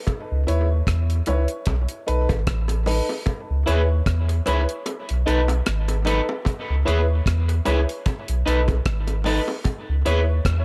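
A dry, dark reggae kit of hi-hat, kick and rim click opens this deep, spacious dub reggae excerpt alongside tight, high-tuned bongos carrying tape echo, with a round sine sub bass sitting up front and a boxy, intimate grand piano adding echoing stabs over a swung groove that alternates C#m7 and B7. After the opening break, a twangy, slightly broken-up electric guitar enters at 3.7 seconds with lush chorus and tape echo. The kick drops out between 4.9 and 6.5 seconds, all within a small room's light reverb.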